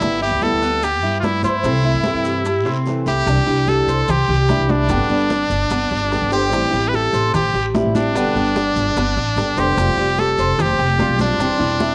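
A straight 4/4 pulse at 148 BPM carries this relaxed excerpt of Cuban son and guajira in C major, with ringing congas, soft-handed low bongos, raspy guiro and grainy maracas sitting quietly under a woody, thumpy pizzicato upright bass, and a drum fill at 2.7 s leading into the second section at 3.3 s. Up front, a brilliant trumpet sings the melody with vibrato, scooped notes and a punchy, forceful pop delivery. A dark, fingerpicked flamenco guitar with audible finger squeak and a metallic, double-strung Cuban tres playing arpeggios fill in around it, and all three carry a cassette-tape tint within the home-recorded small-room sound.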